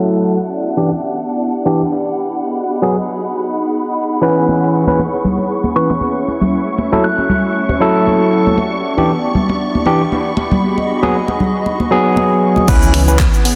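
Drenched in lush hall reverb and densely limited, this moody, late-night deep house excerpt opens on a gritty, barky overdriven tine electric piano stabbing over hollow, flute-like pad chords, an ethereal airy pad and shimmering string-machine violins, all pumping under a long filter sweep; ringing close congas enter at 4.5 seconds, a pure, gentle synth bell sings a brief tape-echoed melody at 5.8 seconds, and at 12.7 seconds a punchy electronic kick, a round sub bass, a layered kit of snaps, claps, hi-hat, shaker and crash, and a dusty, lo-fi warbling pluck arpeggio arrive together.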